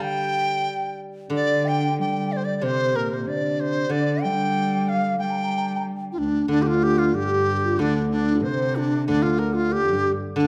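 In a straight 2/4 at 93 BPM, this wistful, graceful Chinese chamber ensemble excerpt sets a large dizi up front with a buzzing, crisp-attacked melody and expressive vibrato over a very quiet, distant, hollow xiao second line, ringing silvery fingerpicked steel-string zither accompaniment, and a dark bowed cello entering at 1.3 seconds with expressive vibrato and portamento, all in a moderate recital hall reverb.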